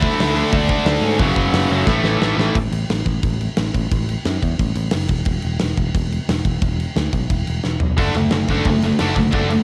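Punk rock at 177 BPM in a straight 4/4 and A major, rebellious and energetic, cut from a longer piece. A biting, overdriven guitar carries the melody in the background while two tight distorted guitars, bright and picked, drive the riff, one up front and the other set behind it. The melody ends at 2.4 seconds and the riff guitars drop out just after, leaving bass and drums to carry the middle stretch until the riff pair returns at 8.0 seconds on a D/F# chord. A growly picked electric bass plays throughout, and a big rock drum kit with a fat snare, a dark rolled-off top and drum fills leading into each new passage sits up front. The changes move through D5, F#m, A5 and E5, and the home cassette recording, bathed in studio reverb, adds tape colour to the riff guitars and drums.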